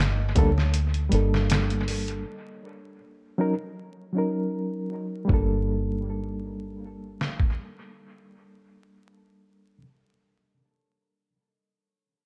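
Dry and echo-heavy with a dusting of vinyl crackle, this smoky, dark trip hop excerpt in G minor moves at 79 BPM with a light swing on the sixteenths. A muffled, pitched-down sampler-style kit with a thumpy kick, medium-tuned snare and hi-hat sits up front with dub echo, beside a round, punchy, foam-muted fingered electric bass; both play until about 7.5 seconds. A reedy, worn electric piano, slightly out of tune and heard through its built-in speakers, enters at 0.4 seconds and carries on to 9.8 seconds, shaded by tremolo, a low-pass filter sweep and tape echo over Gmadd9 and Ebm7 chords.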